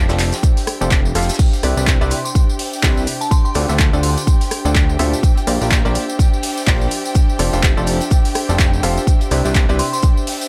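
Piano house at 125 BPM in C major, uplifting and feel-good, with a swung sixteenth feel and sidechain pumping on the strings, piano, bass and pad as the chords move from F69 through Cmaj9, Dm7 and Bb69. A clear baby grand piano plays the riff with tape echo over a fat, detuned sawtooth analog bass, while lush bowed strings and an airy, breathy pad sit in the background of a small room. Up front, a punchy, layered electronic kick joins overdriven drum-machine handclaps, hi-hat, rim click, tambourine and crash, backed by a very quiet acoustic kit of snare, hi-hat and shaker, and a glassy FM synth bell with chorus and phaser enters at 2.1 seconds.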